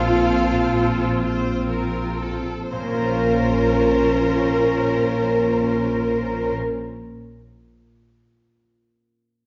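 A dark cello section carries the bass of this cinematic, emotional film score fragment, singing with vibrato and expressive portamento from a distant place in the sound. The music moves in a rubato 6/8 at around 38-44 BPM in Bb minor, slowing through its opening moments as the harmony shifts from F/Bb to Bbmadd9 at 2.7 seconds, and the mood is longing and bittersweet. A bright, focused violin section carries the melody in the background, while a second violin section adds a smooth, even line, a lightly vibrato-touched viola section supplies close, full-bodied accompaniment, and a rich double bass section anchors a low Bb beneath the cellos. A mellow French horn section sustains classical-style chords in the background, and a very quiet concert harp lets its fingerpicked arpeggios ring across a broad range. The strings and horns fall away at 6.5 seconds, leaving the harp to ring alone until 7.2 seconds, all heard from further back in a wet recital hall with a soft, rounded top end.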